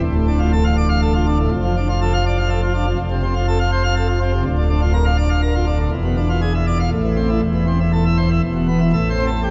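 Wet, cavernous cathedral reverb with a 6.8-second decay surrounds this brief cut from a dramatic, majestic classical organ toccata in triple metre. A solo pipe organ plays full plenum with bright mixtures and baroque voicing, its pipes' crisp chiff sitting up front as the line reaches from deep pedal notes to the upper register. The harmony moves from D minor through F and B-flat to a tense E7b9, settling on A minor by 8.9 seconds.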